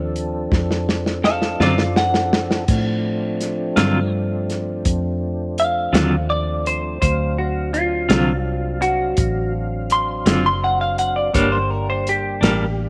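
A dark, clean electric guitar takes the solo in this smoky, brooding slow blues. It enters at 1.6 s with a fingered, tremolo-shaded tone placed up front. The groove moves at 55 BPM in a straight 12/8, and a muffled, lo-fi soul drum kit opens with a fill near the start, its dry sound marked by dark cymbals and a tight kick. Underneath, a foam-muted, punchy bass anchors the low end while a mellow tonewheel organ holds sustained chords through a slow rotary speaker and chorus vibrato. A compressed semi-hollow guitar adds a second line, bathed in lush chorus, as the harmony rests on D7#9 before moving to Gm at 11.3 s, and the whole excerpt sits in a light reverb with small-room ambience.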